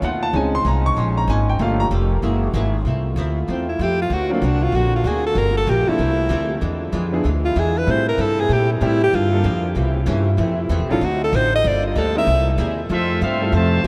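A swung 4/4 at 191 BPM drives this energetic, brassy big band excerpt in F major, cut from a longer piece. The woody, thumpy upright bass sits up front, while a dark, hollow-body archtop guitar with lush chorus, a clear baby grand piano with short sustain, and a bright, tight trombone section holding sustained chords fill the background from the start. The piano takes a solo over the accompaniment until 2.8 seconds, passing through chords such as Bbm11 and Gm9. From 3.5 seconds a breathy alto saxophone with scooped notes, light vibrato and delay takes the melody over a progression that moves through D7alt, E7b9 and C7b9. At 12.9 seconds a clear trumpet section with a soft attack takes up the melody, joined by a close-miked trombone section on a second line as the harmony lands on Fmaj7. A huge ambient reverb soaks the mix, giving the swinging ensemble a dreamy haze.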